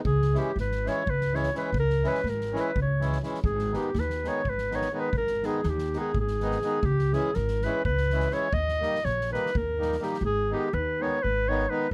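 A close, detailed and nearly dry recording carries this fiery, bittersweet Balkan wedding-band piece in a brisk 7/8 at 248 BPM, cut from a longer work, where a warm, smooth-topped clarinet sings a classical-style solo up front over a reedy, dark accordion, a woody, thumpy pizzicato upright bass on gut strings, and a soft-mallet drum kit with a fat snare and boomy kick that drops out at 10.2 seconds, as the chords move from Dbm through Abm and Eb.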